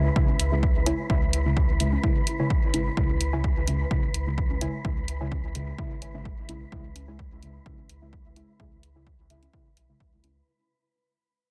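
Nocturnal and meditative, this dub techno excerpt sets a dark, detuned chord stab with chorus, phaser, echo and a filter sweep over a round sine sub bass and an overdriven, punchy kick, while a breathy, wind-like noise texture, an electronic hi-hat, tape-warm congas and a muted, filtered dub stab in the background fill out a sidechain-pumped groove that fades out across its 10.5 seconds.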